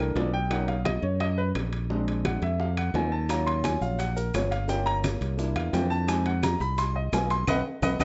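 A driving straight-four groove in 4/4 gives this fiery Afro-Cuban jazz excerpt its push. Thick-skinned, low-tuned congas play very quietly, ringing metal-shell timbales add shimmer, and round, distant bongos and woody claves sit in the background, while grainy maracas join at 3.3 seconds. Up front, a growly, punchy fingered electric bass anchors the low end as a natural-toned grand piano carries a solo through shifting jazz chords, with a band accent landing at 7.5 seconds in a moderate studio reverb.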